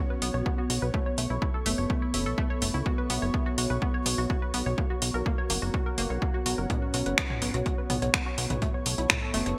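A straight 4/4 pulse at 125 BPM drives this dark, melancholic melodic techno, where a punchy, layered electronic kick sits up front beside a drum kit of finger snaps, metallic hi-hat and toms dressed in gated reverb, while a funky sawtooth bass plucks low, a round, detuned analog pluck spins chorused and delayed arpeggios, a deep, moody pad holds sustained chords beneath an ethereal, phased airy pad, and from 1.7 s a smooth portamento lead sings with vibrato in the background, the harmony moving through Bsus2, A and F# in a lush hall with a bright 1980s-style digital sheen.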